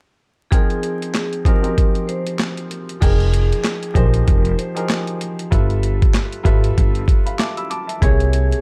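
Dark production with vinyl crackle and small-room ambience frames this tough, moody boom-bap hip-hop excerpt, where a gritty, pitched-down sampler-style drum kit with a thumpy kick and high-tuned snare sits up front beneath a woody, polished upright piano colored by cassette tape, a metallic, ringing vibraphone melody with slow motor vibrato and digital delay, and a pizzicato gut-string upright bass that enters at 3.0 seconds before a piano fill at 7.1 seconds.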